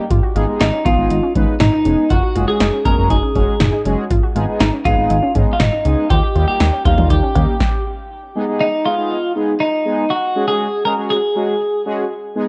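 Worn, warbling cassette-tape sound with a light digital ambience wraps this driving, melancholic synth-pop excerpt, cut from a longer piece. Up front, a bright, twangy twelve-string electric guitar carries the melody through analog delay over bold, wave-folded synth brass with chorus and vibrato. Meanwhile, a lo-fi, mellow pluck plays arpeggios in the background, and a fat, detuned sawtooth bass and a dry, gritty drum machine with deep kick, punchy snare, metallic hats, cowbell and toms push underneath. The bass, pluck and drums drop out by 7.7 seconds, leaving the brass and guitar to carry on alone.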